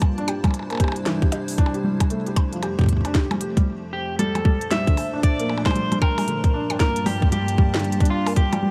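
An icy, crystalline glass pad with chorus and sidechain pumping opens this melancholic, intricate IDM excerpt at 115 BPM in G dorian, over a tight, overdriven electronic kick sitting up front and a glitchy kit of clicky hats, tiny snare and percussion blips, all with a 16th-note swing. From 0.2 seconds a soft, felt-muted upright piano adds arpeggios with audible action noise, 12-bit sampler grit and digital delay, moving through Cadd9, Fadd9, Bbmaj7 and Gm7. During a short break beginning at 3.7 seconds, a twangy, slightly broken-up electric guitar enters to carry the melody with spring reverb and delay, all within a dark, dry production.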